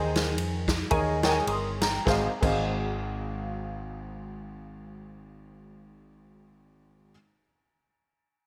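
An upright piano with audible action noise and a woody, intimate tone opens this hopeful, uplifting uptempo gospel excerpt in Ab major, carrying the accompaniment over a dark, round hollow-body electric bass from the start, with a touch of analog chorus on the keys. An up-front big-band drum kit with a punchy kick swings in 4/4 from 0.2 to 2.6 seconds, its snare, kick, ride and crash given gated reverb, while the tempo, ranging from 97 to 118 BPM, slows through the first 2.1 seconds before the harmony settles onto Ab6. A lush hall reverb and bright 1980s-style digital production frame the whole passage.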